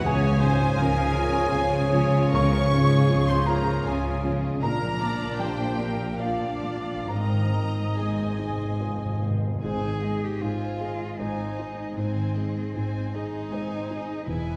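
A very quiet, dark violin section carries the melody of this uplifting, hopeful cinematic passage in a rubato 3/4, over second lines from a mellow flute section, a distant clarinet and a lush violin section, with a felt-muted upright piano, rich violas, soft-attack French horn chords, a ringing concert harp's arpeggios, a focused cello section and an expressive double bass section beneath. Round calf-headed timpani enter at 7.1 s, and a close solo cello with vibrato and portamento takes the melody at 9.6 s, all set in a wet concert hall heard from further back in the room.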